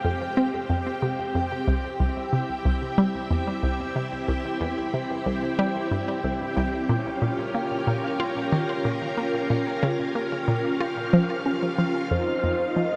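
Drenched in a vast, echoing reverb, this mysterious, cosmic slice of sequencer-driven space music sets a hollow, bouncy square-wave pluck up front, its riff treated with chorus, phaser and delay, against lush, vintage string-machine chords that glow with ensemble chorus. Underneath, a resonant sawtooth texture bubbles through random filter steps, sitting low in the mix with its own built-in reverb, while the harmony drifts from Fmadd9 through C to Bbm. At 12.1 seconds, as the chord turns to F7(no3), a round, dark octave-layered lead enters with vibrato and chorus just before this excerpt from a longer piece cuts off.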